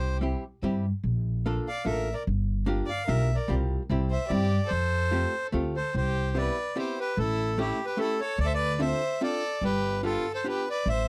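A reedy, single-reed accordion with dry tuning carries the melody up front in this nostalgic, whirling musette waltz at 146 BPM in 3/4, moving from F major into C major at 5.9 s. A biting, nasal violin, played by one player, adds a bowed second line alongside it, while a growly, woody pizzicato upright bass and a dark, compressed hollow-body archtop guitar, picked clean, supply the bass and accompaniment. The sound is dry and close, in the manner of a 1970s studio recording, and the clip is cut from a longer piece.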